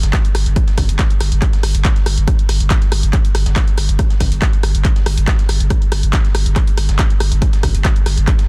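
Industrial and hypnotic, this short cut from a longer piece of driving peak-time techno runs at 140 BPM in a straight 4/4, built on a layered, punchy electronic kick set up front from 0.1 s, a deep, thick saturated sub bass around G1 carrying tube saturation, sidechain pumping and a low-pass filter, a dry analog drum machine supplying handclaps, hi-hat and rim click, and a gritty, compressed breakbeat sampler kit with a high-tuned, high-passed snare and pumping, high-passed hats sitting in the background, all in a dense, heavily limited modern master with little reverb.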